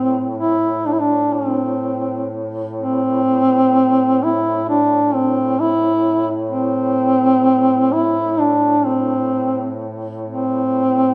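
A mellow duduk melody, up front with a smooth top, vibrato and scooped notes, carries a longing, mournful Caucasian folk lament in A minor at a rubato 64 BPM over a second duduk's distant, soft-attacked drone, both blooming in the wet reverb of a recital hall in this short passage cut from a longer piece.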